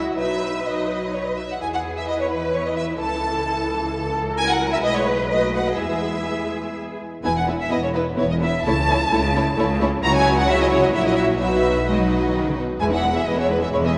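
An up-front, focused second violin line sits beside a lush, expressive first violin melody with vibrato and portamento in this spirited, lively classical-period movement for string orchestra in E major, moving at 122-134 BPM in a rubato 3/4, with soft-attack violas in the accompaniment, rich cellos with a smooth top, and a distant, even double bass section with light vibrato holding the bass, every section bowed inside a wet concert hall reverb.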